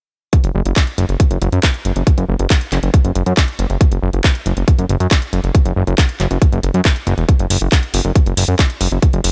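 Dry and close, this driving, intense psychedelic trance excerpt at 138 BPM in straight 4/4, tuned to A4 = 436 Hz, sets a tight, up-front electronic kick drum over a layered garage drum kit of handclaps and warm hi-hats, both re-recorded in a small room, alongside a fat, saturated, detuned sawtooth bass with an evolving filter sweep that sits up front between E1 and F#2 from 0.4 s to 9.3 s.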